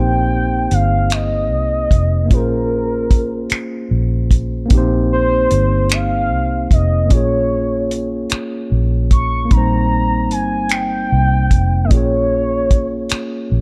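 Slow six-eight R&B at 50 BPM in Bb dorian, this short cut from a longer piece feels yearning and sultry, rocking gently between Cm7 and Bbm7 every few seconds. A gliding portamento lead carries the melody across a range of Bb4 to Db6, its smooth, detuned sawtooth-and-sine tone sustained with a soft attack, vibrato, chorus and a slapback echo, sitting up front. Beneath it, a tine electric piano plays clean accompaniment through its built-in speakers, while a vintage muted fingered electric bass holds the low end between F1 and C2 with a round, foam-muted, amped sound. A cloth-damped, thuddy acoustic drum kit joins at 0.7 seconds with finger snaps, hi-hat and a tight kick, dry and up front with a rolled-off top. Light reverb and a small room ambience give the whole a dark, warm production.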